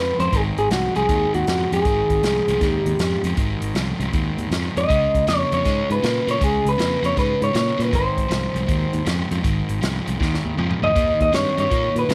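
A picked electric guitar through a small old amp carries the melody up front, its slightly broken-up, compressed tone shimmering with vibrato. Beneath it, a crunchy overdriven guitar, also picked and close, plays a warm riff, while a fingered electric bass adds a dark, round foundation. A swinging big-band drum kit joins at 0.2 seconds with hi-hat, punchy kick, medium-tuned snare and toms, sounding airy and polished, and it plays a fill from 10.2 to 11.0 seconds. This rollicking yet laid-back electric blues shuffle in Ab major moves at 158 BPM with a swung feel, drifting from Ab to Db, back to Ab and onto Eb. The sound is dry and intimate, and the passage is cut from a longer piece.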